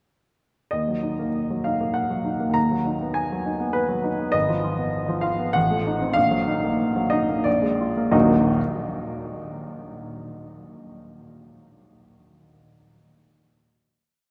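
A warm baby grand piano carries a single-line melody over inner broken chords in this short, stormy and bittersweet romantic character piece in Eb minor, moving in a rubato 3/4 at roughly 87-101 BPM, slowing from 3.5 seconds through a harmonic turn toward Bb7 before resolving on a final Ebm chord at 8.1 seconds that rings on in the wet reverb of a vast, echoing cathedral.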